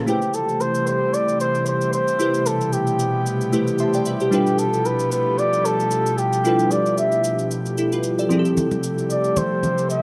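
This short cut from a longer amapiano track is a home recording on cassette, with light reverb and a digital ambience around it. The mood is hypnotic and deep, riding a swung sixteenth-note feel in 4/4. Glassy, detuned digital keys with fast, decaying attacks and a mellow chorus sheen carry the accompaniment, with a short keys fill at 3.5 seconds. Beneath them, an airy, breathy pad holds bright sustained chords up front, moving from Am7 to G13 to Fmaj9. A dark, veiled trumpet with a bucket mute sings the solo melody in a classical style with vibrato, sounding distant and roomy through cassette-tape colour and analog delay. A layered electronic shaker ticks quietly throughout, and close, dry congas with thick, damped skins and hard hands enter at 8.6 seconds.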